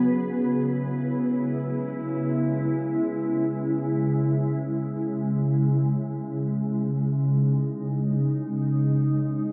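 Bathed in a huge, wet ambient reverb with a decay of about 8.6 seconds, this short ambient fragment, cut from a longer piece, feels serene and spacious. It floats in free time in C# minor, tuned slightly flat with A4 at 437 Hz. A single FM pad plays alone from 0.0 to 9.5 seconds, sitting up front with a glassy, ethereal, and dark character. Its slow attack, long sustain and long release let it settle onto a C#m7 chord, spanning C#3 to B4. Ensemble chorus, the pad's own built-in reverb and a tape echo thicken the tone and blur its edges into the surrounding space.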